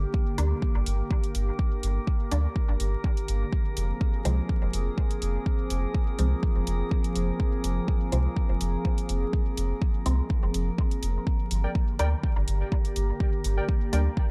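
A deep, up-front electronic kick and dark hi-hats drive a lightly swung 4/4 pulse in this nocturnal, cavernous dub techno excerpt, with a soft, round sub bass riding low beneath a muted, detuned chord stab that carries a phaser, dub echo and a filter sweep throughout. A warbly, nostalgic tape-like pad and a drifting glassy harmonics texture pump gently with the kick and sit in their own reverb, while vinyl crackle hangs over the whole mix as the chords move from Gm to Fm and back. At 11.6 seconds, mellow lo-fi synth keys enter with chorus and echo.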